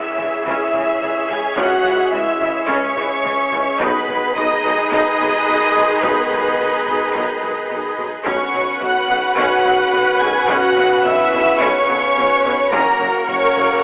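Cinematic, epic orchestral film score at 108 BPM in C# dorian, relentless and grand, with lush, vibrato-rich violins carrying a high melody and a second line beneath it, a dark viola section adding accompaniment, while a rich string section, mellow French horns and distant, punchy trombones hold sustained chords through C#m, G#m/B, Bsus2 and F#. Very quiet cellos, double basses and a tuba anchor the low end from 0.2 s, a taiko ensemble played with hard sticks drives from the background, and a huge, dark impact opens the passage before ending at 1.6 s. The whole cut-down section sits in a wet recital-hall reverb with a narrow, telephone-like colour.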